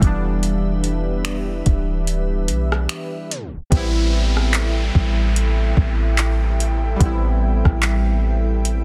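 A swung, late-night 73 BPM groove in 4/4 drives this moody contemporary R&B excerpt in A minor, where a smooth electronic drum kit of soft kick, metallic hi-hat, finger snaps, handclaps, rim click and softly clipped snare sits up front beside a deep, round 808-style bass, while detuned sawtooth analog keys with chorus and phaser and a glassy, ethereal FM pad with ensemble chorus and reverb move from G6 to Am7 across a tape stop at 3.3 seconds, after which a downlifter enters at 3.7 seconds in a dense, heavily limited master.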